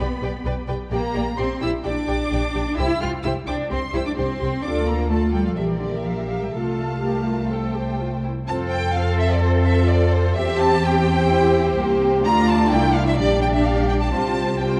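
A dark, warm production sets a string orchestra in a wet concert hall with a reverb tail of 2.0 seconds, giving this short cut from a longer piece a graceful, spirited glow. The movement is quick and classical in style, moving at 128 BPM in a straight 4/4 and centred on F major, tuned slightly high at A4 = 445 Hz. Two bowed violin sections play throughout, one carrying the melody from C5 up to F6 with a smooth, even, close vibrato, the other weaving a lush, expressive second line beneath it. The viola section fills in the accompaniment with a warm, smooth-topped tone, while the cellos and an up-front double bass section share the bass, the cellos singing expressively and the basses sitting smooth and even down to Bb1. The harmony passes through G/B, Gm/Bb, C and Dm before settling on F at 8.5 seconds, where a new section begins, and the passage closes on a Csus4 chord at 14.1 seconds.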